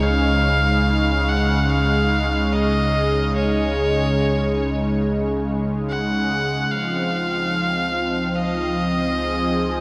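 This ambient excerpt in free time and D-flat major feels serene and weightless. A single bowed electric violin carries the melody between Db5 and Gb5, its clear, intense tone with light vibrato and a smooth top sitting up front, trailed by shimmer reverb and delay. Beneath it, a detuned sawtooth analog pad holds sustained chords from Db3 to Ab4 with a soft attack, long release and a moving notch, colored by chorus and shimmer reverb and also placed up front. A deep, round sine sub bass sustains on Db2 with a mellow character and fades out across the full 9.8 seconds. The harmony shifts from Dbadd9 to Fm7/Db at 6.7 seconds, all set in a huge, wet space with an 8.7-second decay that leaves the mix dreamy and soaked in reverb.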